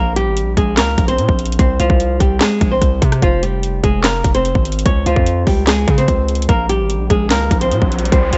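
A boxy, fingerpicked flamenco guitar carries the melody up front through a low-pass filter, with a punchy, saturated 808-style bass underneath in this brooding, hard-hitting trap excerpt at 147 BPM in a half-time feel. An electronic trap kit enters at 0.2 seconds with a hard-clipped kick, sharp snare, metallic hats, handclaps and rim clicks, while the chords move from Bbmadd9 through Fm and Dbmaj7 to Bbsus2. A riser builds in the background from 7.0 seconds, all set in a digital ambience.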